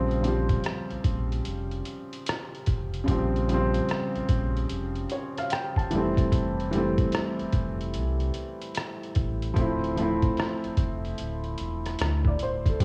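A soft, felt-muted upright piano and a deep sine sub bass open this nostalgic, mellow lo-fi hip hop excerpt, the up-front piano dulled by cassette tape and a low-pass filter as its chords move from Bbm6 to Fmaj9 and Dm9 with a fill at 4.7 s, while a gritty, pitched-down, compressed sampler-style trip hop kit of hi-hat, thumpy kick and rim click joins at 0.1 s with swung sixteenths, the whole piece set in light reverb.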